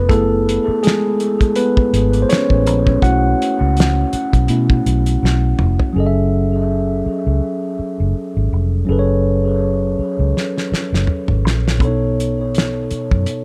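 R&B with a neo-soul lean, this late-night, sultry excerpt moves at 82 BPM in a swung 4/4 in F# dorian, shifting from F#m11 and B7sus4 to F#m9 and B7. A mellow, clean tine electric piano takes the featured role for the first 6.0 seconds, trailed by dub echo, while a dark, foam-muted fingered electric bass gives round, punchy support. A cloth-damped, thuddy drum kit with a fat snare and tight kick drops out at 5.9 seconds after a fill and returns at 10.4 seconds, set in an echo-heavy mix with light studio reverb.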